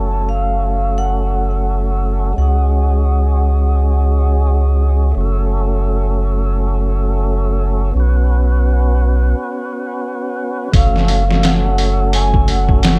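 A round, deep analog bass with tube saturation sits up front, anchoring this melancholic, brooding trip hop excerpt while a fat tonewheel organ with key click, slow rotary speaker, harmonic tremolo, 12-bit sampler grit and tape echo carries the accompaniment throughout. A dark, ringing vibraphone with medium motor vibrato and tape echo plays the melody from the opening until 4.8 seconds, then falls silent before returning at 10.8 seconds. At 10.7 seconds a muffled, pitched-down sampler-style drum kit enters with a thumpy kick, medium-tuned snare and hi-hat, overdriven and compressed with a small-room character.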